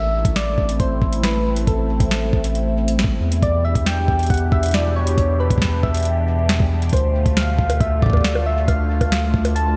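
IDM at 137 BPM in A minor, intricate and cerebral, this short cut moves from Am to Em7 to Dm under a soft, keys-like FM synth lead whose warbling melody carries chorus, slapback echo and delay, while a swirling, detuned sawtooth pad holds sustained chords through phaser and chorus. A round, deep analog bass sits up front beneath a gritty, thumpy sampler-style kick drum entering at 0.2 seconds. A booming analog drum machine follows at 0.3 seconds with bongos, metallic hi-hat and a crisp snare touched by slapback echo, all framed by a moderate scoring-stage reverb that gives a big arena sound.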